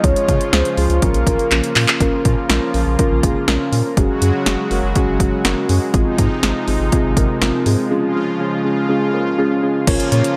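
A moderate recital-hall reverb gives this cool, melancholic synth-pop excerpt a roomy sound. It moves at 122 BPM in a straight 4/4 in B-flat minor, the chords passing from Db through Bbm, Gbsus2 and Ab6 before returning to Db. A punchy, tape-warm analog drum machine sits up front with kick, snare, hi-hat, handclaps and crash cymbal, while a round, deep analog bass carries the low end. Muted, felt-like synth keys with a dark, intimate tone supply the accompaniment, and a brassy, evolving analog pad with chorus and shimmer reverb holds sustained chords beneath them. A mellow, horn-like synth lead with vibrato, digital delay and shimmer reverb carries the melody only until 1.8 s, and a drum fill from 1.5 s leads into the longer second section.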